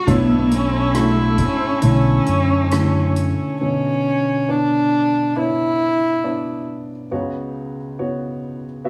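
A straight 4/4 pulse from a soft-mallet drum kit, with a boomy kick, hi-hat and rim click, anchors this melancholic, heartbroken acoustic folk-pop ballad, alongside a round, punchy fingered electric bass and an intimate grand piano whose action noise is audible. A bowed cello carries the opening melody with vibrato and portamento in plate reverb, while a nasal, reedy violin with a period-style gut-string tone plays a second line and a floating chamber string section holds pure, distant chords in the background. The cello, bass and drums fall away by 3.4 s, and from 3.6 s the violin takes a solo over the piano as the harmony moves through Bmadd9 toward F#sus4/C#.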